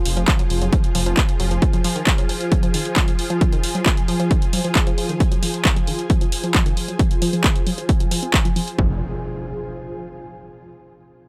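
An overdriven, up-front electronic kick drives this hypnotic, industrial stretch of peak-time techno at 134 BPM in F minor, alongside a gritty techno kit of handclaps and hi-hat, a deep, rumbling detuned saw bass, a round analog pluck riff with chorus and analog delay, a swarming, wave-folded drone in the background, and an ethereal pad with ensemble chorus and phaser. The bass, pluck, drone and pad all pump against the kick until an electronic impact lands at 8.8 seconds in this dry, saturated excerpt from a longer piece.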